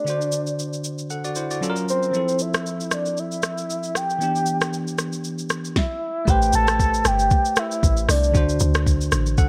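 A late-night, soulful amapiano piece with a gentle swing, heard as a short cut from a longer track. A soft, octave-layered synth lead carries the melody from the start, its round tone built on a sub octave and shimmering with chorus, tremolo, vibrato and delay as it sits up front until about 8.6 seconds. Beneath it, a bell-like tine electric piano plays clean, bright accompaniment through chords such as D7, Fmaj7 and Em7. A smooth R&B drum kit with a soft kick, fat snare, silky hats, rim click and shaker sits forward in the mix with a tape-warm, produced character. At 6.3 seconds the music drops onto Am9, and a deep log drum bass enters with dark, percussive FM hits edged by a noise layer, grounding the closing bars. The whole piece is bathed in a digital ambience.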